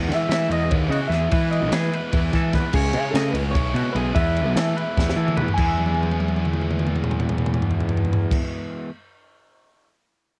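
Bright and intricate, this short cut of math rock and midwest emo moves in an odd seven-beat metre with a straight feel, passing from Emaj7 through C#m9 back to E. An electric guitar through a small old amp carries the melody with a slightly broken-up, compressed tone, while a twangy, clean guitar picks arpeggios in the background, bathed in plate reverb. A double-tracked overdriven guitar plays a low riff underneath, and a fuzz-drenched picked bass sits up front, round and punchy with its own overdrive. The crisp fusion kit, airy and polished with dark cymbals, a high-tuned snare and a tight kick, fills at 5.0 seconds and again from 5.8 seconds as the music shifts into a new section. The guitars and drums carry a cassette tape colour, and the whole home recording has a light reverb, with the drums ringing on alone after the other parts stop, until 9.9 seconds.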